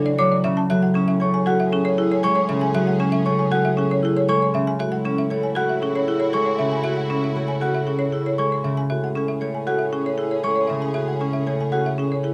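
A woody, rustic marimba melody opens this bright, hypnotic minimalist classical piece in straight 4/4, over ringing harp accompaniment, metallic vibraphone arpeggios, quieter sustained chords from a smooth, rich string section and a bassoon bass with light vibrato, as bell-like celesta arpeggios enter at 0.2 s and the harmony moves from Dmaj7/A to Amaj7 within a moderate, large studio reverb captured by close, detailed microphones.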